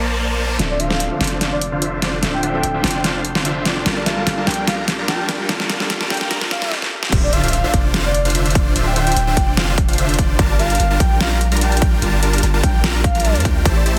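A very quiet riser opens this emotional, bittersweet future bass excerpt in D minor at 147 BPM with a half-time feel, as a soft, felt-muted upright piano with audible action noise and 12-bit grit sits in the background beneath huge, detuned supersaw chords under a sweeping low-pass filter and a deep, decaying 808-style bass, these three pumping to the sidechain; from 0.6 seconds an overdriven dubstep kit with a deep snare, hi-hat and crash drives the build-up through drum fills, while a breathy, flute-like synth lead with chorus and vibrato soon carries the melody, and at 7.1 seconds the piano stops as an impact and a punchy electronic kick land for the drop, all in a dense, heavily limited master with light reverb.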